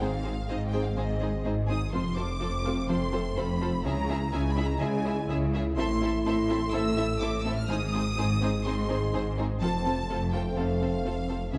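A tense, futuristic hybrid orchestral and electronic film cue opens with everything sounding together from the start: two lush, vibrato-rich violin lines sing a focused melody and a soft-attacked second line over a dark, woody viola accompaniment and mellow sustained French horn chords, while a very quiet, tight sequenced synth drives arpeggios and a thick, menacing, saturated detuned saw bass shares the bass role with expressive double basses and cellos in the background, all set in a moderate scoring-stage reverb across this 11.6-second cut from a longer piece.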